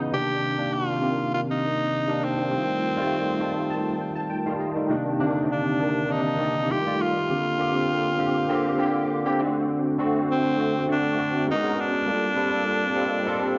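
Pop in C dorian at 100 BPM with a light sixteenth-note swing, slick and bittersweet, where a barky, lightly overdriven tine electric piano with ensemble chorus lays down rich chords like Cm9, F9 and Abm11 and adds fills at 3.1 and 12.7 seconds, while an up-front, raspy tenor saxophone carries a forceful, punchy melody with light vibrato, all bathed in a lush hall reverb within a dark, warm production in this short excerpt.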